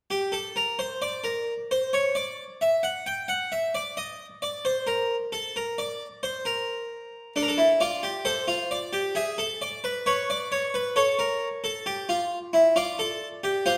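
A baroque-style three-part fugue for solo harpsichord, solemn yet driving, moving at 66 BPM in a straight 4/4. The Italian-style instrument sounds full and brilliant with its three sets of strings, placed up front in a resonant recital hall, its lines spanning D4 to G5 as the harmony settles from an open start onto D minor at 7.3 seconds, then passes through E7/G# and A before reaching Dm/F at 12.8 seconds. This short passage, cut from a longer piece, runs to 13.8 seconds.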